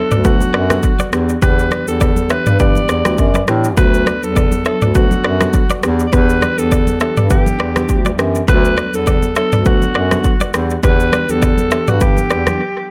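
Afrobeats with a breezy, sunny feel, cut from a longer piece: a growling, raspy alto saxophone carries the melody over mellow tine electric piano chords and a bright, twangy clean guitar riff tucked in the background, all three soaked in dub echo, while a distant, roomy bass clarinet holds the low end, an up-front electronic afro-pop kit with a deep kick, rim clicks, shaker and toms drives the swung groove, and very quiet thin-skinned congas add texture until a brief break at 12.6 seconds.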